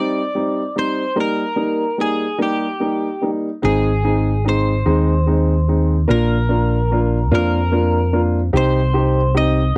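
A six-eight pop ballad in a slow, swaying 6/8 at 49 BPM, this tender passage is cut from a longer piece and moves through Cm, Eb, Ab and Bb before settling back on Cm. A clean, direct-recorded electric guitar carries the melody in a bright, twangy, compressed voice, its picked lines colored by an analog chorus. A baby grand piano supplies polished, up-front accompaniment in the middle register from the very start. At 3.6 seconds a fingered electric bass joins with a dark, round, punchy tone that sits prominently in the mix and deepens the harmony as the music turns toward Ab. The sound is dry and close, with little reverb, in the manner of a 1970s studio recording.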